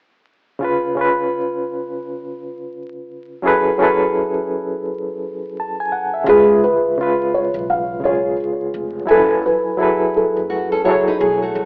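Hip hop at 85 BPM with a swung sixteenth-note feel, this hazy, nostalgic excerpt is cut from a longer piece and moves between C#7 and F#m11 chords. A reedy, barky electric piano carries the accompaniment from 0.6 s, lightly overdriven with a fast tremolo, heard through its built-in speakers and set up front, softened by cassette tape, a low-pass filter and plate reverb. At 6.3 s a felt-muted upright piano takes the melody, soft and boxy with thick felt and audible action noise, dressed in plate reverb and tape echo, while a pizzicato upright bass on gut strings adds a woody, thumpy low end. A fingerpicked, classical nylon-string guitar arrives up front at 10.5 s with a second line, filtered and placed in plate reverb. The whole mix has the rough feel of a home demo, with vinyl crackle, an AM radio tone and a small, wet room.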